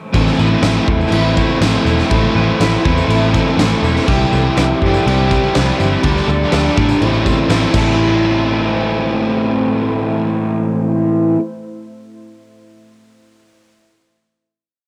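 Cassette home recording with light reverb carries a brooding, dreamy shoegaze and dream pop piece in A minor at 123 BPM, where an up-front overdriven garage guitar and a background stack guitar with reverse reverb strum riffs over a twangy, very quiet twelve-string electric guitar's picked arpeggios, a round foam-muted bass driving eighth notes, a big rock kit with fat snare and punchy kick alongside a jingly tambourine until about 8.0 s, and a deep, detuned sawtooth pad entering at 1.9 s, moving through Amadd9, Cadd9 and Dsus4 before a final hit on Am.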